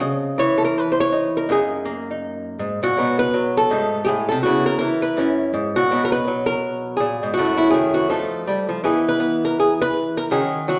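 A solo archtop guitar opens this relaxed, sophisticated jazz excerpt from 0.0 seconds, playing with a swung eighth-note feel in 4/4. The electric hollow-body tone is dark and clean, picked and compressed, sitting up front in a large studio with a generous, wet reverb that lingers for a little over a second. Unaccompanied, the guitar moves through rich extended harmony, starting on C#m9 and F#69 before resolving to B, then a turnaround through G#, C#m7 and F#7 leads on to the next phrase. A second pass begins at 5.9 seconds on Bmaj7, drifting through F#m7 and F7 to settle on a bare E5 as the excerpt closes at 10.8 seconds. The playing spans from low bass notes up into the upper register, giving the lone instrument a full, self-contained sound in the live room.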